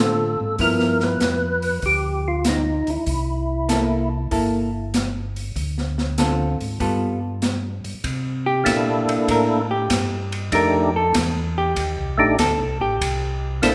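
Soulful and swinging, this soul jazz organ trio, cut from a longer piece, moves at 97 BPM in 4/4 with a 68 percent swing on the eighths, centered in C mixolydian. A fat, percussive tonewheel organ carries the melody up front, its third-harmonic percussion and key click colored by a slow rotary speaker and chorus vibrato; it drops out at 4.1 seconds and returns at 8.6. A dark, clean hollow-body electric guitar comps throughout with a fingered tone and takes a solo from 8.0 seconds as the harmony shifts to C13 and F13. Beneath it, a mellow, round organ bass with its own slow rotary speaker anchors the low end. An acoustic drum kit enters just after the start and sits up front, with dark cymbals across hi-hat and ride, a high-tuned snare and a boomy kick. The trio sounds as if it is playing in a church or concert hall, with a lush recital-hall reverb.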